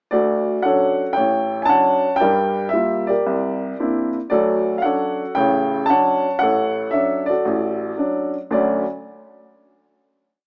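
Sophisticated and playful, this short solo jazz piece sets a dark, woody upright piano up front, swinging through song-like motifs over a stride bass with close voicings. Moving from Dmaj7 through Gm7 and C9 back to Dmaj7, the piano plays until 8.8 seconds, and a final chord follows from 8.5 seconds. Audible action noise and long sustain give it an intimate feel, framed by light reverb and the rough, small-speaker sound of a home demo.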